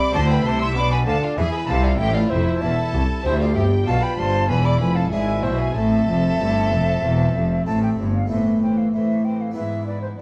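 Classical, a baroque-style concerto movement in A minor at 96 BPM in 4/4, festive and brilliant in mood, cut from a longer piece. A hollow, airy concert flute carries the melody with vibrato and tongued articulation, miked close. Beside it, one violin section plays the melody while a second violin section takes a second line, both with gut-string tone, light vibrato and a smooth top. A distant, dark viola section and a dry, full-bodied harpsichord, plucked in French style with three sets of strings, supply accompaniment in the background. Nasal cellos and an up-front double bass section form a reedy bowed bass from 0.1 seconds, the double basses stopping at 8.3 seconds as a new section begins. The harmony moves through A minor, E7 and B diminished before arriving on E over G sharp, heard in a moderate stone room with a warm production.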